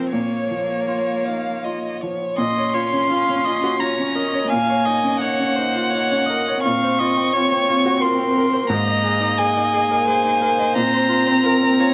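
Fragile and longing, this rubato neoclassical excerpt in 3/4 sets a rich, vibrato-laden solo violin singing the melody up front over a worn, natural grand piano and a smooth bowed viola in accompaniment, while a lightly vibrating cello carries a second line touched with tape echo, all framed by close, detailed microphones in a large studio's moderate reverb.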